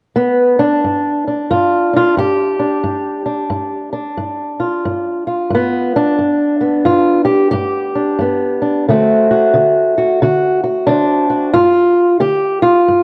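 A single fingerpicked acoustic guitar opens at 0.2 seconds, its old ladder-braced body giving a dark, woody, boxy tone with the dull ring of aged strings. This is acoustic country blues in G mixolydian at a swung 90 BPM in 4/4, rollicking yet laid-back, cut from a longer piece. The guitar sits up front as the only part, ranging from G2 to G4 as the harmony moves from G7 to D7 at 8.9 seconds before settling on a bare G7 voicing at 11.6 seconds. It carries a cassette tape character, and the whole home recording is bathed in a wet spring reverb with a small room ambience. The guitar plays on until the clip ends at 13.0 seconds.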